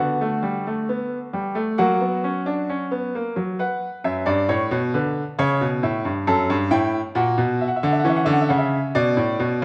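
A bright baby grand piano carries this short classical passage alone, a baroque-style four-part fugue cut from a longer piece. The mood is solemn and contemplative, moving at an unhurried pace in a straight four. The piano sits up front with a brilliant, open tone, its voices spanning from F#2 up to A5. A recital hall reverb with a 1.4-second decay surrounds the playing in a generous, wet space. The harmony moves through minor-key chords and their dominant, with a new section beginning at 3.6 seconds before the passage settles back on the home chord at 8.9 seconds.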